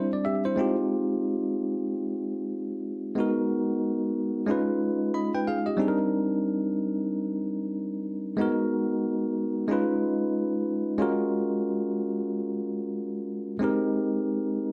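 A bell-like, bright tine electric piano plays alone and up front through the whole 14.7 seconds of this smooth, warm hip hop passage with a swung 16th-note feel, its clean voicings carrying lush seventh and ninth chords while a slapback echo trails each phrase inside a moderate studio reverb and a dark, warm production.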